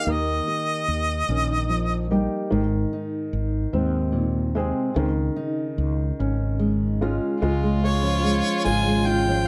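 This excerpt of an acoustic folk-pop ballad opens at a hopeful, heartfelt 49 BPM in a straight 6/8, with a harmonica carrying the melody, distant and roomy yet up front with vibrato, over fingerpicked steel-string guitar on woody old strings, a felt-muted upright piano playing intimate arpeggios with audible action noise, and a round, dark fretless electric bass joining at 0.1 seconds. The harmonica drops out after 2.1 seconds as the chords move from Eb through Ab to Dbadd9. At 7.4 seconds the harmony settles on Dbmaj7 and a focused solo violin enters with a bowed second line, backed by a very quiet studio string section's soft-attack sustained chords with portamento, before the harmonica returns at 7.8 seconds under light reverb.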